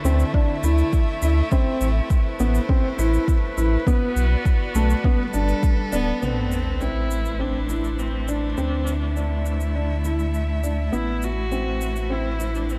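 A felt-muted upright piano carries the riff in this moving, hypnotic piano-and-strings electronica, its soft, intimate tone revealing audible action noise and trailing into tape echo and shimmer reverb. Set at 102 BPM in a straight 4/4 in A dorian, the piece rests on a close, bowed string quartet holding sustained chords with smooth vibrato. A round sine sub bass sits up front beneath them, and both the quartet and the bass pump against the sidechain. An overdriven electronic kick, deep and forward, drives the opening until 5.8 s, while an overdriven shaker ticks quietly throughout. A solo viola with a focused, rich voice takes up the melody at 5.9 s, and a sub drop lands in the background at 6.2 s as the harmony moves through Amadd9 and Dsus2. The production is dark and warm, with light reverb and small room ambience in this cut from a longer piece.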